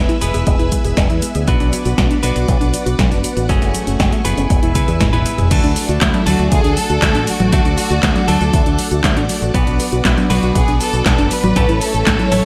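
Danceable and romantic, this italo disco excerpt moves at 119 BPM in a straight 4/4, built on lush string-machine chords with a gritty vintage edge, a warbling, dusty pluck arpeggio kept in the background, clean compressed guitar stabs with delay, and a bright envelope-filtered fingered bass. A punchy house kit of snare, handclaps, hi-hat, cabasa, congas, toms and crash, touched with gated reverb, joins an analog electronic kick re-recorded in a large room, and a drum fill from 4.8 to 5.5 s leads into the second section. At 6.0 s a rich, vibrato-laden studio violin section takes the melody as the chords move from D through Bm to A, all set in light digital ambience.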